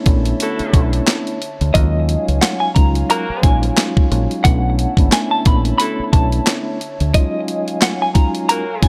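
Boom-bap hip-hop at 89 BPM in 4/4, this gritty, dark excerpt rides a 16th-note swing of 57% over chords moving between Bm11 and Ebm11, and it is cut from a longer piece. The sampler-style drum kit sits up front, compressed and pitched down, with a thumpy kick, a high-tuned snare, handclaps and hi-hat, while a deep, round dub bass played with the fingers anchors the low end from 0.1 to 7.1 seconds. A mellow tine electric piano, clean and heard through its built-in speakers, supplies the accompaniment alongside a moody, nasal analog pad whose detuned, slow-attack chords are thickened with chorus. Tight, jazz-style saxophone stabs with light vibrato cut in from 0.4 seconds, treated with delay. At 1.7 seconds a hollow-body electric guitar enters with a picked, compressed melody high in its range, colored by tremolo and delay, and a digital ambience surrounds the whole mix.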